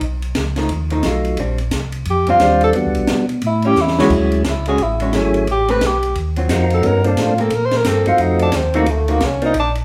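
A breathy tenor saxophone with scooped notes leads this bluesy, soulful soul jazz organ trio at 176 BPM, soloing with swing over a round, mellow tonewheel organ bass on slow rotary speaker, a percussive organ melody entering at 1.0 seconds, dark, clean hollow-body archtop guitar accompaniment, and a compact cocktail kit with a high-tuned snare, punchy kick and a drum fill at 3.8 seconds, all in a moderate studio reverb as the band plays live together.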